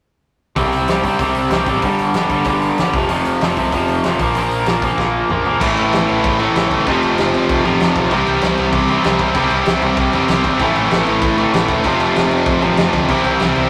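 A straight 4/4 punk rock beat at 192 BPM drives this rowdy, rebellious excerpt in C major, with a loose indie drum kit giving a fat snare, punchy kick and gritty, rolled-off top under two picked overdriven guitars: a biting one up front and a raw, bright garage guitar in the background, plus a growling overdriven electric bass. A drum fill at 5.0 seconds leads into a new section at 5.6 seconds, where a double-tracked, scooped high-gain guitar joins with a distorted edge as the harmony shifts from power chords to an Am, F, C progression. The rough rehearsal-room sound carries tube saturation and light reverb.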